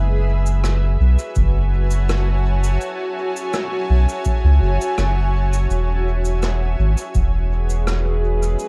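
A blurred, evolving granular cloud pad holding F#m7 and a round, soft dub sub bass up front open this meditative, spacious ambient dub piece in F# minor at 83 BPM, joined at 0.5 s by a distant, roomy cabasa and rim click with dub echo and at 1.4 s by a dry analog kick drum in the background, before the harmony shifts to E at 5.7 s within a dark small-room production.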